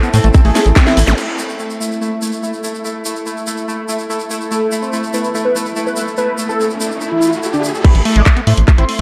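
Light reverb and digital ambience frame this hypnotic, intense psychedelic trance excerpt at 144 BPM in A minor, where a drop built on an up-front tight electronic kick drum, a garage drum kit with a cracking snare and a punchy sawtooth sequencer bass drives a squelchy screaming distorted acid line with dub echo and a thick, detuned unison lead with phaser and delay, over a pulsing gated texture, a grainy tube shaker and a warbling lo-fi tape-like pad in the background, until zaps and a riser from 5.6 s lead back into the drop at 7.8 s and a juicy resonant blip pluck appears at 8.8 s.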